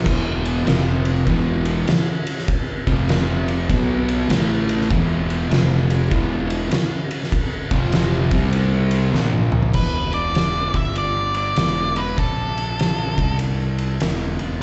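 Brooding and ominous, this excerpt of stoner and doom metal crawls at 99 BPM with a swung feel, as a double-tracked, picked fuzz guitar grinds out a dark riff over round, punchy overdriven fingered bass and an oversized low-tuned drum kit with a fat snare, punchy kick and dark cymbals set in a bright stone room. The guitar riff stops at 9.7 seconds after a drum fill, and an octave-fuzz lead guitar enters with a short melody coloured by slapback echo and digital delay until 13.4 seconds. It all sounds like a live club gig heard through the venue's PA, with club reverb, a muffled top end and a faint mains hum.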